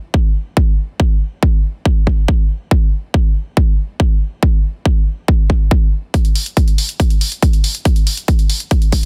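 A punchy, overdriven electronic kick drives a straight 4/4 pulse at 140 BPM in this short trance excerpt, sitting up front and layered from its start at 0.1 seconds. At 6.1 seconds an analog, tape-toned electronic hi-hat joins at a lower level as a build-up begins, lending the driving, emotional mood extra urgency. The sound is dry and dense, with a heavily limited modern master.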